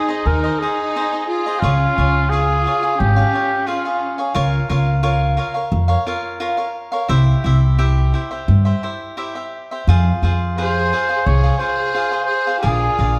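A mellow trumpet with light vibrato opens this festive mariachi passage, carrying the melody in a classical style while a rich, bowed violin section sings a focused second line beneath it, both sounding a little distant. Crisp, bright picked cavaquinho sets up the accompaniment from the first moment. At 0.3 seconds a woody, thumpy pizzicato upright bass joins up front, anchoring the straight 4/4 pulse at 88 BPM. The trumpet and violins drop out at 4.2 seconds, leaving cavaquinho and bass to carry the harmony through Bbm/Db, C and Fm, before the horn and strings return at 10.6 seconds as the chords turn toward Bb7. A moderate recital-hall reverb gives the proud, celebratory mood a roomy glow, and this short section is cut from a longer piece.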